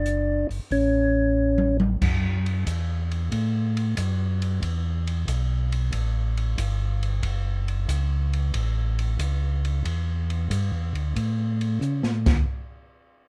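A greasy, bluesy soul jazz organ trio excerpt at 92 BPM in swung 4/4 opens with a round, percussive tonewheel organ melody over D and A chords, its third harmonic percussion and slow rotary speaker up front, before it stops at 1.8 s during a drum fill that begins at 1.4 s. A mellow tonewheel organ carries the bass line through the whole passage with vibrato, key click and its own slow rotary, while an acoustic small-room jazz kit with dark cymbals, a medium-tuned snare and a boomy kick sits back with a rolled-off top and adds another fill from 11.8 s. The dry sound moves through chords such as Esus2, F#m, Gsus2 and Em7 before the harmony drops out at 12.1 s.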